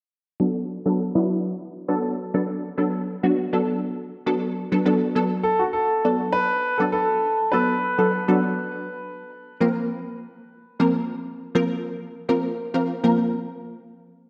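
Pop with an upbeat, summery mood, this excerpt opens at 0.4 seconds on a detuned sawtooth unison pluck carrying the accompaniment, its punchy, fast-attack notes decaying over a noise layer. An ensemble chorus thickens the pluck and a low-pass filter rounds it off, while a filter sweep runs through the opening section and a moving notch colours its tone. At 5.4 seconds a warm concert grand piano steps forward with a short melody, its deep bass and long sustain trailed by delay, before it drops out at 9.6 seconds. The harmony moves from D6 at the start to Bbsus2 later on. Both parts sit up front, yet the mix is dreamy and soaked in a lush hall reverb, with a soft top end.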